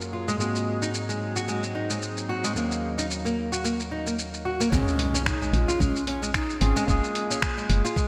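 Bathed in a lush hall reverb and a bright, 1980s-style digital sheen, this short passage from a longer organic downtempo piece in Bb minor sets a hypnotic, mystical mood at 111 BPM with a gently swung 4/4 feel. An overdriven, gritty tine electric piano, played through a combo amp with analog chorus, delay and sidechain pumping, carries the accompaniment throughout. Up-front fingerpicked nylon-string guitar arpeggios with fresh strings and a touch of delay ride over a dusty, tape-warm sampler-style kit of finger snaps, hi-hat and shaker. At first a tense, string-like bowed drone with vibrato sits in the background under chords moving from Ab7 to Ebm7. At 4.7 seconds the drone drops away as an electronic impact hits, a thumpy compressed kick and a round, woody FM bass arrive, and an airy, close-miked wooden flute sings an expressive, breathy melody with vibrato and delay over Bbm7, before the harmony settles on Gbmaj9 at 6.9 seconds.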